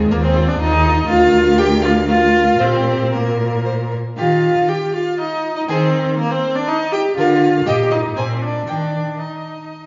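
A brief passage from a quick, cheerful and graceful classical-period string quartet movement in Eb major opens with violin, viola and cello sounding together, joined a moment later by a second violin. The piece moves in 3/4 at roughly 113-123 BPM, but the pulse breathes with a rubato feel. The leading violin carries the melody with a rich, expressive tone, soft attacks, vibrato and portamento, though it sits in the background of the blend. The second violin traces a second line alongside it with a clear, intense sound, light vibrato and a smooth top. Up front, the focused viola supplies accompaniment, while the cello anchors the bass with soft attacks, vibrato and gliding portamento. The quartet is heard from further back in a reverberant recital hall, lending the sound a mellow, rounded air before the fragment comes to rest on Eb at 8.7 seconds.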